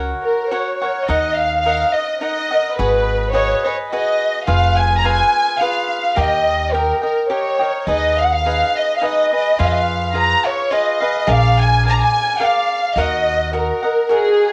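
This mariachi-flavoured Mexican folk fragment in waltz-like triple time feels festive and romantic, and is cut from a longer piece. A dark symphonic violin section carries the melody from 0.2 seconds, bowed as a lush ensemble with rich vibrato and set up front in the mix. Beneath it, a picked acoustic cavaquinho supplies crisp accompaniment. A pizzicato upright bass with steel strings gives a woody, up-front low end until 13.7 seconds. The cavaquinho and violins carry a cassette-tape colouring, and the home cassette recording sits in a moderate studio reverb. The harmony moves through minor chords, a diminished passing chord and a dominant seventh before settling back on the minor home chord at 13.0 seconds.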